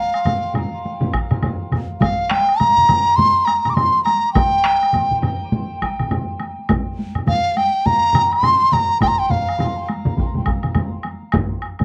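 A large dizi opens this cut from a longer Japanese traditional taiko ensemble piece, its bamboo tone airy and hollow with a buzzing membrane, soft attack and vibrato, carrying the melody up front between F5 and D6 through plate reverb and analog delay. Within the first second a woodblock and several taiko ensembles join, striking with heavy sticks, one in a live room, another distant in a large room, a third sitting in the background of a small room. A fourth taiko group, played with hard sticks and heard close and dry, enters at 1.1 s to thicken the ceremonial, powerful drive. The woodblock adds a woody, band-limited, vintage click beneath the drums. At 103 BPM in 4/4 with a swung sixteenth-note feel, the dizi falls silent at 9.9 s while the percussion carries on to 11.8 s, all colored by a moderate studio reverb and the soft grain of cassette tape.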